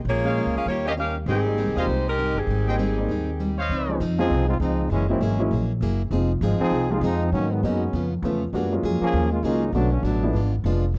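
A dry, close 1970s-style studio sound with small room ambience frames this energetic, joyful slice of big band swing, cut from a longer piece. A woody, dark upright bass sits up front throughout, joined by a picked acoustic guitar with audible finger squeak and a natural, long-sustaining upright piano comping underneath. A mellow saxophone section with a smooth top carries the melody at the start, while a clear trumpet section with light vibrato and a soft attack adds stabs until about 4.0 seconds. At 3.7 seconds the harmony moves into a new section, and from 4.2 seconds a bright, close-miked trombone section with vibrato plays the second line as a featured solo, running to 10.5 seconds. The chords move richly through extended and altered colours such as Dbmaj9, Db7alt and E7b9, giving the passage a lively, sophisticated lift.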